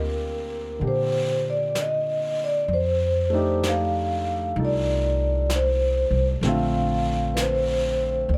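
A tender, late-night jazz ballad at 64 BPM in a gently swung 4/4, this short passage drifts over Eb6, F13 and Bbmaj9 chords. A mellow, ringing vibraphone played with soft mallets carries the melody, shimmering with fast motor vibrato above a natural-sounding grand piano and a woody, thumpy pizzicato upright bass with gut strings that sits up front. Brushes on a distant, roomy kit join at 0.8 s, and the overall sound is dry, with little reverb.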